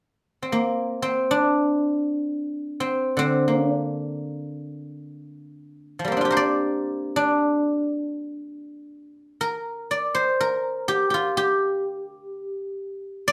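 Flowing in free time, this short fragment of a longer traditional Chinese piece gives a solo guzheng, played with fingerpicks, an elegant, longing voice. The instrument sits up front with a silvery, ringing tone in a moderate studio reverb, entering at 0.4 s and moving into a new passage at 9.4 s before the cut at 13.3 s.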